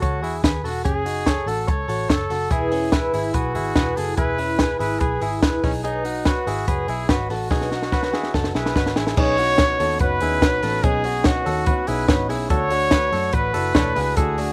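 Youthful and nostalgic, this jangly indie pop excerpt puts a smooth, softly attacked trumpet with light vibrato and slapback echo up front over a compact cocktail drum kit with a high-tuned snare and punchy kick, twangy, bright arpeggios from a clean direct-recorded electric guitar, and a round, foam-muted vintage electric bass, with a woody, shimmering twelve-string acoustic guitar joining in the background at 2.5 seconds, a drum fill at 7.5 seconds, and a dark, mellow upright piano with its own slapback echo entering at 9.2 seconds, heard in a dry, outdoor setting.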